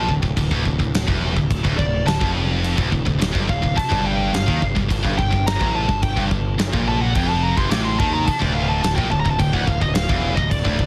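A warm, distorted lead guitar solo with tape echo sings from the opening of this relentless, heavy metal excerpt over two bright high-gain riff guitars, one scooped and set in the background, plus a growling picked bass with overdrive and a punchy, up-front big-room drum kit of crash, kick and medium-tuned snare, while a very quiet double-tracked guitar joins the riff at 3.8 s as the harmony moves from Dm to F9 and returns to Dm at 8.3 s, the whole held in a dry, dense, heavily limited modern master.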